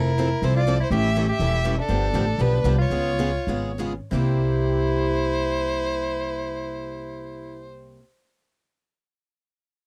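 Heard from the very start, a playful, swinging jazz manouche excerpt in 4/4 and C mixolydian at 172-246 BPM sets an expressive, vibrato-laden bowed violin melody with soft attack and portamento up front over a mellow, distant soprano saxophone second line, a woody, thumpy pizzicato upright bass, a bright, boxy picked swing guitar and a fresh-stringed steel-string guitar in the background, slowing down between 1.9 and 4.1 seconds before reaching C7 at 4.1 seconds, all captured in a dry, close 1970s-style studio sound with light reverb.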